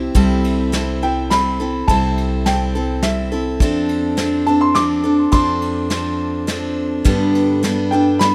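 Gentle and warm, this acoustic folk excerpt sways in 3/4 at 104 BPM, with a bright, up-front picked steel-string guitar and a dark, thumpy pizzicato upright bass on gut strings moving through Am7/C, F6 and Gadd9. Soft brushes on a small-room kit with a tight kick, medium-tuned snare and ride cymbal join at 0.2 seconds. A clear, boxy upright piano carries the high melody from 1.0 seconds, touched with analog delay, all within a rough home-demo mix with studio reverb.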